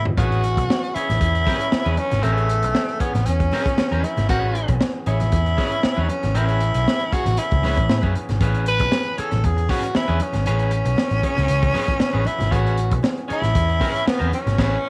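A drum fill and a band accent open this hypnotic funk excerpt at 117 BPM in a straight 4/4, settling onto a single Amaj9 chord. A growling tenor saxophone carries the melody up front, its raspy subtone tone bending with vibrato and scooped notes while sounding roomy and distant. A crunchy breakbeat drum kit, saturated and gritty with a high-tuned snare, tight kick and dark cymbals, drives alongside a round, foam-muted picked electric bass that sits prominently beneath. A twangy electric guitar at the edge of break-up adds accompaniment with spring reverb, while a fat, percussive tonewheel organ with light overdrive and a stopped rotary speaker holds sustained chords in the background. Very quiet congas ring softly in a small room, and a final band accent lands from 14.6 to 14.9 seconds.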